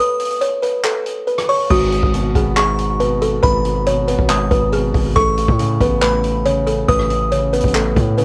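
A dry, lo-fi home cassette recording opens this dark, hard-hitting half-time trap cut, where a woody, buzzing kalimba carries the melody alongside a tinkling, warbling FM synth tine bell line treated with chorus and tape echo, a vintage acoustic drum kit with a punchy kick, handclaps, hi-hat, rim clicks and crash cymbal joins at 0.2 s, and after the opening break a mellow, deep concert grand piano accompaniment and an aggressive, saturated 808-style bass arrive together at 1.7 s.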